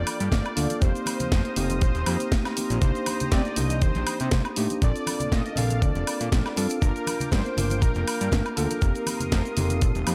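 A nu-disco excerpt with a sensual, cosmic mood, set over a gently swung 4/4 groove that cycles through Gm7, F7sus4, Cm7 and Bbmaj7. A gritty, thumpy electronic kick sits up front alongside a layered house kit with a cracking snare, hi-hat, shaker and woodblock that sounds re-recorded in a large room, while maracas and congas stay in the background with a small-room acoustic feel. Underneath, a fat, saturated analog bass with detuned sawtooth and square tones and a filter sweep carries the low end. A mellow, clean tine electric piano and a lush, warbling vintage pad, both pumping against the kick, fill out the harmony, with the pad adding chorus and slow-blooming sustained chords. On top, a thick, bold unison lead with a sub octave, vibrato and tape echo sings the melody, all wrapped in light reverb and digital ambience.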